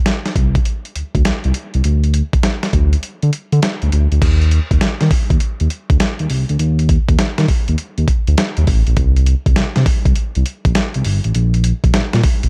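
A swung 101 BPM groove in 4/4 drives this confident, punchy slice of new jack swing R&B in C dorian, with a dusty, sampler-style drum kit of crash, hi-hat, thumpy kick and medium-tuned snare that sounds gritty and overdriven, its kick dropping out from 3.0 to 4.2 seconds before the second section begins. A smooth synth bass joins at 0.4 seconds, its sawtooth and square tones touched by ring modulation, with fast attacks and sustained notes sitting up front. The production is dark and dry, with little reverb.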